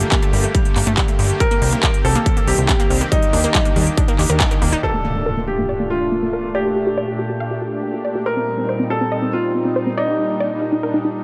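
Euphoric, uplifting trance cut from a longer piece opens with a punchy, up-front electronic kick, a tape-toned big-room kit of handclaps and crisp hi-hats, a funky plucky sawtooth analog bass and full-bodied, detuned unison-pluck arpeggios with digital delay, the pumping bass, arpeggios and lush supersaw pad joined by a present grand piano second line with delay, until the beat and bass fall away by 4.8 seconds, when an electronic impact hits and a bright, filter-swept unison-pluck melody carries on in the background of a lightly reverberant room.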